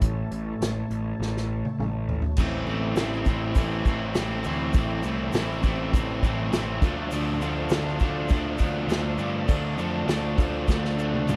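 Indie rock with a bittersweet, moody cast, this excerpt is built on two crunchy overdriven electric guitars playing riffs, one up front with spring reverb and the other brighter, washed in lush chorus and tape echo, over a growly fuzz bass and an acoustic drum kit played with bundle sticks, with dark cymbals and a punchy kick in a roomy studio space. A very quiet, thick detuned pad holds sustained chords beneath everything, moving from A to Am7 and then Dm7. A drum fill at 1.2 seconds leads into the second section, where a grainy egg shaker joins at 2.4 seconds in the background.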